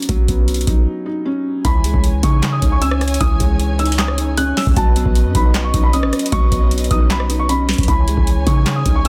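A felt-muted upright piano opens this dark, menacing trap excerpt, its soft, intimate tone carrying audible action noise, alongside a booming analog drum machine with a deep kick, crisp snare, metallic hats, handclaps and rim clicks sitting up front, with a short room on the snare, clap and hats. A deep, boomy 808-style bass with a sine body and a noise layer joins almost at once, sitting in the background with a fast attack and decaying notes. The tempo is 154 BPM in a half-time feel in C# minor, moving between Badd9 and C#madd9 chords. After a break from 0.9 to 1.6 seconds, a dark, boxy concert grand piano enters high in its range with the melody, treated with tape echo, while a lush, woody string section holds sustained chords with vibrato and a smooth top. The small room ambience and a dense, heavily limited modern master round out the sound of the excerpt.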